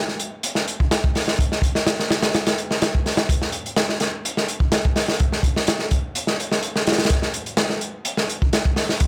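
A straight 126 BPM breakbeat groove in 4/4 drives this funky, swaggering excerpt, played alone from 0.1 s on a crunchy acoustic kit of kick, snare and hi-hat, heard up front and mid-forward with a tight kick, a medium-tuned snare, gritty saturation and a rolled-off top in a dry studio room.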